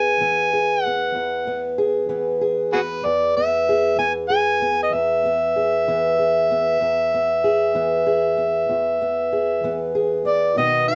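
Laid-back and gritty, this brief excerpt of acoustic country blues in 12/8 puts an amplified, overdriven harmonica up front, carrying a jazz-style solo melody full of tongue slaps and scooped notes. Beneath it, a fingerpicked old ladder-braced acoustic guitar on old strings gives a dark, woody, boxy accompaniment. A moderate studio reverb surrounds the pair.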